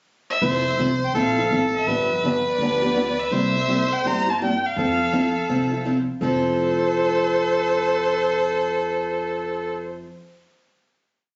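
Acoustic string swing in the jazz manouche style, a playful complete piece at 166 BPM in F major, where a smooth, boxy bowed violin carries a motif-based song melody with vibrato from 0.3 seconds while a raspy, growling soprano saxophone with a soft attack adds an up-front counter-melody, a picked parlour acoustic guitar with fresh strings plays four-to-the-bar rhythm accented on two and four, and a woody, thumpy pizzicato upright bass on gut strings sits lower in the mix with two-beat root and fifth lines and walk-ups, the whole captured on a phone in the room with moderate studio reverb and a dull top end before a final chord from 6.2 seconds.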